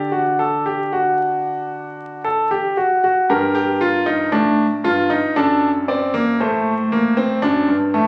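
A clear, intimate baby grand piano plays this contemplative yet driving baroque-style three-part fugue in G minor at a stately 58 BPM in 4/4, its natural tone sitting up front with long sustain and audible action noise, heard as a short cut from a longer piece captured on a phone in a recital hall whose moderate reverb blends with club reverb, vinyl crackle and compression.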